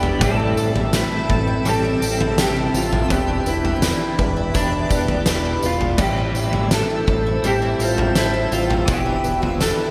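This melancholic, hazy dream pop piece opens at 83 BPM in a straight 4/4, with an oversized, low-tuned drum kit sitting up front: a punchy kick, a fat snare, dark cymbals, toms and tambourine, all gritty and saturated and wrapped in gated reverb. Beneath it, a thick analog bass of detuned sawtooth and square waves holds the low end with a nasal, evolving tone. A picked twelve-string acoustic guitar spins boxy, octave-doubled arpeggios that shimmer through chorus and delay, while a twangy, direct-recorded clean electric guitar sits in the background, pulsing with tremolo and analog chorus. Over this, a slightly broken-up electric slide guitar carries the melody through lush chorus and delay, and a cloudy, blurred granular pad fills in sustained chords above. A very quiet, twinkling granular shimmer drifts in at 0.4 seconds and lasts until 6.8 seconds, as the harmony cycles between Am7 and Em7 and the music moves into a new section at 6.0 seconds, all set in a bright, 1980s-style digital production with a moderate plate reverb.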